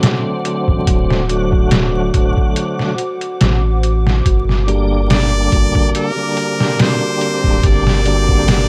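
Trip hop with a hypnotic, smoky mood, cut from a longer piece, built on a gritty, pitched-down sampler drum kit with a thumpy kick, an up-front tonewheel organ with key click, fast rotary speaker, tremolo and tape echo, a detuned, ring-modulated dark analog pad, and bell-like celesta arpeggios dusted with 12-bit sampler grit, as a round dub sub bass enters at 0.7 seconds, a nasal, punchy straight-muted trumpet melody with vibrato and tape echo arrives at 5.1 seconds, and a very quiet, tense string-like drone joins at 7.2 seconds, all over a bed of vinyl crackle.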